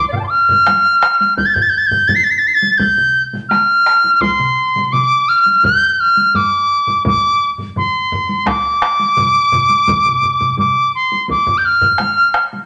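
A straight 4/4 pulse at 85 BPM drives this powerful Japanese traditional taiko ensemble piece, tuned to A4 = 435 Hz and cut from a longer work. Several taiko layers sit beneath the melody: one struck with hard sticks in a small room, two with heavy sticks recorded close and dry, and another with hard sticks carrying a vintage, band-limited tone. The latest of these enters at 3.0 s. Out front, a pure, crisp-attacked piccolo with vibrato carries the melody across a range of D5 to C7 from 0.0 s to 12.4 s, its bright voice ringing through a wet large-studio reverb.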